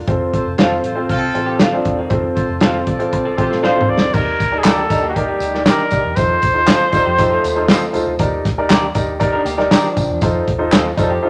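A smooth-topped trumpet with vibrato and scooped notes carries the melody from 3.6 to 7.9 s in this joyful, danceable uptempo 1960s-style soul excerpt at 118 BPM, over an up-front grand piano with deep bass, a drum kit with a tight kick and dark cymbals whose fill leads into an Ebmaj7 and F7 passage, a round, foam-muted fingered bass, two slightly broken-up lo-fi electric guitars in the background playing stabs and a riff, a distant, roomy horn section heard early on, and tambourine and handclaps that join at 4.1 s, set in a large studio reverb.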